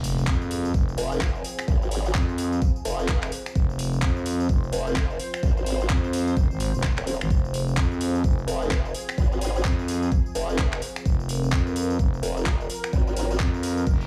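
A swung 4/4 groove at 128 BPM drives this aggressive, bouncy bass house excerpt in F minor, where an up-front knocking electronic kick and a tape-warm garage kit of finger snaps, handclaps, metallic hi-hats and tambourine sit under a growling, thick FM bass, joined at 1.0 seconds by a detuned, formant-filtered wobble bass, while a nasal, bright sawtooth pad with filter sweeps and chorus holds sustained chords in the background, the pad and both basses pumping with the sidechain, and a very quiet electronic impact opens the clip at 0.0 seconds before a reverse cymbal closes it at 13.9 seconds.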